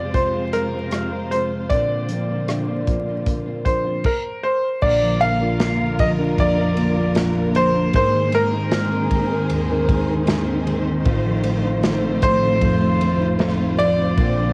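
A slow, straight 4/4 at 77 BPM carries this tender, heartfelt pop ballad excerpt, with a natural country drum kit of punchy kick, medium-tuned snare, hi-hat, rim clicks, ride and crash coming in at 0.1 s. Up front, a brilliant concert grand piano with deep bass carries the melody over a mellow, clean tine electric piano, while a lush bowed string section holds sustained chords with vibrato and portamento, and a fingerpicked nylon-string guitar plays bright arpeggios in the background. Moderate spring reverb, cassette tape colour and vinyl crackle lend the home recording a homespun character as the harmony moves from Fm through Bbadd9 and Abadd9 to F7/A.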